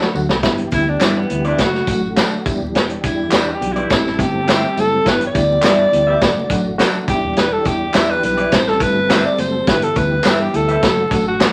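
Uplifting and joyful, this excerpt of uptempo 1960s-style soul at 104 BPM in G major opens with a short drum fill before a bright, vibrato-laden alto saxophone solo rides up front over punchy, gritty vintage drums, a dark, round fingered bass, a reedy, slightly out-of-tune electric piano with fast tremolo, a clear tonewheel organ swirling through a slow rotary speaker, distant tambourine and group handclaps, and slightly broken-up guitar stabs entering at 1.0 s, all cycling through G6, D/F#, Em7 and Am7 under wet studio reverb and vinyl crackle.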